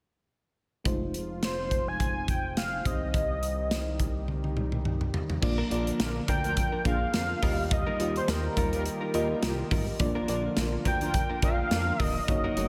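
A lightly swung 4/4 groove at 105 BPM, driven by a punchy, polished acoustic kit and a glossy, chorused synth bass, sets up this nostalgic, uplifting 1980s-style pop passage in Bb mixolydian, cut from a longer piece. A warbling FM electric piano with slapback echo and an evolving, brassy analog pad carry the Fm7 and Cm chords, while a bold, octave-doubled sawtooth lead with vibrato, chorus and tape echo sings up front. After a drum fill at 4.3 seconds the harmony moves to Bb and Ebadd9, a clean, direct-recorded electric guitar riff slips in at 5.4 seconds, and dark, phased synth brass stabs sit in the background from 6.0 seconds, all wrapped in a lush hall reverb for a big arena sound.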